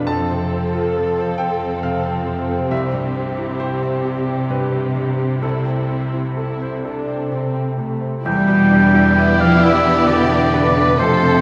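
A bright grand piano with long sustain opens this moving, bittersweet cinematic film score, joined from the start by lush, smooth viola and cello sections and a ringing concert harp playing arpeggios in the background, all unfolding in a slow, rubato 3/4 at around 63-69 BPM over chords of F, C, Am/C and Em7. At 8.2 seconds a soft-attack symphonic violin section takes up a second line, joined at 8.3 seconds by an up-front solo oboe with light vibrato on that line and by double basses deepening the bass, and from 9.2 seconds an expressive studio violin section carries the melody. The whole orchestra sits in a wet scoring-stage reverb, and the passage is cut from a longer piece.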